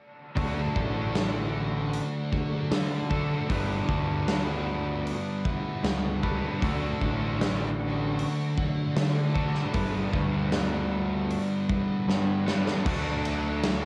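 A home recording on cassette, with light reverb and small-room ambience, carries this wistful, dreamy shoegaze and dream pop rock passage, cut from a longer piece, where a huge arena drum kit with bright cymbals and a punchy kick sits up front beside a round, overdriven fuzz picked electric bass, a dark thick fuzz guitar riff coated in ensemble chorus, a cranked stack guitar riff with overdrive and reverse reverb, and a very quiet, twangy twelve-string electric guitar playing clean arpeggios as the chords move between D and G69, capped by a drum fill at 12.1 seconds.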